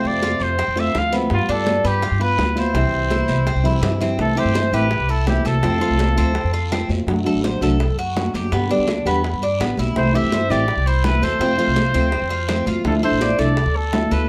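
A punchy, vintage-toned trumpet leads this relaxed, danceable slice of Cuban son and guajira, singing its solo melody up front with light vibrato and a pop-style touch before resting at 6.9 seconds and returning at 10.0 seconds. Beneath it, a thumb-plucked nylon-string guitar with fresh strings gives deep classical accompaniment, while a picked Cuban tres spins metallic arpeggios on its double strings, some doubled at the octave. The upright bass sits forward too, its pizzicato gut strings sounding woody, dark and thumpy. Ringing high-tuned congas, round low-tuned bongos and a raspy guiro, all played in the background, keep the straight four-beat groove moving, with a drum fill at 3.1 seconds leading into the second section. Moderate studio reverb lends the room a gentle glow over a harmony that drifts through chords such as F, G7, C6 and D7 before landing on Dmadd9 at the cut.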